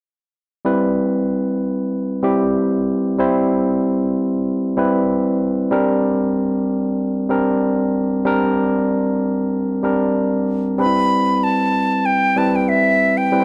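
Soul at 95 BPM in C major, with a lush, romantic mood and a light sixteenth-note swing, this cut-off excerpt opens at 0.6 s with a bright, barky tine electric piano, lightly overdriven through a combo amp and placed up front, moving from Cmaj7 to Bb69. At 10.8 s, as the harmony returns to Cmaj7, a breathy silver concert flute enters up front with the melody, close-miked, tongued and expressive in a straight tone. A moderate plate reverb and a dark, warm production give the whole piece a soft, enveloping glow.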